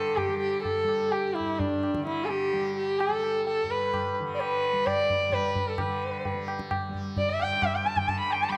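A straight 4/4 pulse at 129 BPM gathers speed throughout this short cut from a devotional, serene Hindustani performance in raga bhupali on G, with the low-tuned, short-ringing tabla joining at 0.2 s, close and dry. Up front, a single bowed sarangi carries the melody with a warm, focused tone and smooth top, gliding between notes with portamento and light vibrato while its sympathetic strings resonate. Beneath it, a softly plucked tanpura holds a buzzing, shimmering drone, all set in a moderate stage reverb as a new section begins at 5.8 s.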